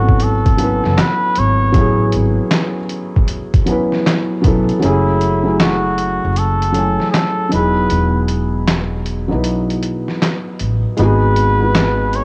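Lo-fi hip hop at 78 BPM in F# dorian, tuned to A4 = 436 Hz and swung on the 16ths, this nostalgic, melancholic fragment sets a veiled cup-muted jazz trumpet melody with light vibrato over a dark, felt-muted upright piano with audible action noise, a woody pizzicato upright bass, and a gritty, pitched-down, sampler-style trip hop kit of handclaps, hi-hat, snare and thumpy kick that drops out at 4.8 s, all bathed in moderate spring reverb, with the drums, piano and trumpet carrying cassette tape character, as the chords move from A6 through F#m7 and Emaj9 to G#m7.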